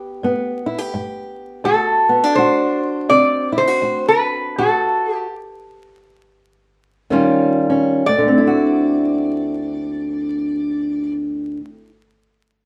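This is a soulful, gritty acoustic country blues excerpt for two guitars in D mixolydian, moving at a slow 60-85 BPM in 4/4 with a swung eighth-note feel. An old ladder-braced acoustic guitar, fingerpicked on aged strings, carries the accompaniment throughout, its tone dark, woody and boxy. At 1.6 seconds a lap resonator guitar enters up front with the melody, played with fingerpicks and slide in a metallic, nasal voice that sits high over the accompaniment. The tempo slows from 1.6 seconds through the end of the opening section, and a stop arrives at 4.6 seconds as the harmony moves from G through D7 and D to a colourful Eb9, settling on D9 in the closing section. Both players share one room with moderate studio reverb, and a layer of vinyl crackle gives the sound an aged character.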